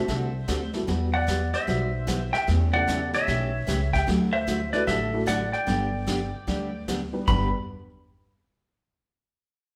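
A bright, twangy lap steel carries a playful, swinging western swing melody in G major at 150 BPM, over a jangly, detuned honky-tonk upright piano, a woody pizzicato upright bass, a full-bodied picked acoustic guitar and a vintage brush kit with a punchy kick, the band playing live together in one room with a large studio reverb, in an excerpt cut from a longer piece.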